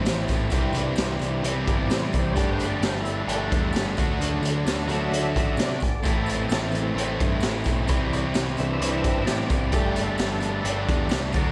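A brooding, swaggering classic rock excerpt opens with a bright, picked riff from a cranked stack guitar alongside a second overdriven guitar set in the background, over a growling, overdriven picked bass and sustained chords from a full, lightly overdriven tonewheel organ with chorus vibrato and a slow rotary speaker. A raw garage drum kit sits up front with a punchy kick, high-tuned snare and hi-hat, its gritty, saturated sound pumping in a small room, while a very quiet, jingly tambourine joins from 0.1 seconds. The straight 4/4 groove moves from Am through Cadd9 and D back to Am before reaching Gsus2, set in light reverb and small-room ambience.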